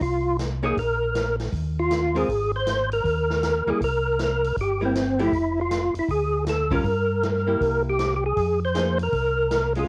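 A smoky, soulful soul jazz organ trio opens at 158 BPM in F minor, with a fat, lightly overdriven tonewheel organ carrying the melody through slow rotary speaker and chorus vibrato, its third-harmonic percussion and key click up front over a round, dark organ bass line and a swinging big-band drum kit with a boomy kick and medium-tuned snare. From 0.6 seconds a clean, hollow-bodied archtop guitar adds picked accompaniment as the chords move from Fm7 through C7 and Bb7#9/D before settling back on Fm7. The short cut has the character of a home cassette recording in a small room, with tape colour on the melody organ, drums and guitar.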